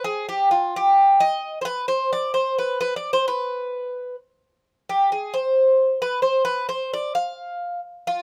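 A straight-feel pulse in 7/8 drives this short fragment of Greek folk music, cut from a longer piece and lasting 8.2 seconds. The mood is intense and driving from the first note. A lone acoustic bouzouki carries everything, picked on its double strings, some of them doubled at the octave, which gives its tone a warm, metallic ring. Its line stays between F4 and F5 and sits up front in the mix. A light reverb surrounds the instrument, and the rough home-demo sound keeps the performance raw and close.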